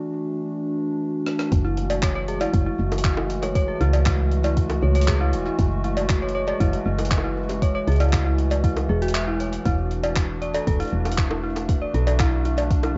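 A warbling, lo-fi pad opens this cerebral, eerie IDM excerpt in F# minor with sustained chords on E9sus4, a filter sweep running through its opening break before the piece settles onto F#m9 at 1.5 seconds. A gritty, overdriven jungle-style sampler kit of bongos, cowbell, handclaps, hi-hat and rim clicks enters with a fill at 1.3 seconds. Then a soft electronic kick, an up-front woody FM bass and a dark, inharmonic detuned synth bell playing chorused, tremolo-shaded arpeggios through analog delay join at a straight 118 BPM, all wrapped in the dull glow of a home cassette recording with light reverb.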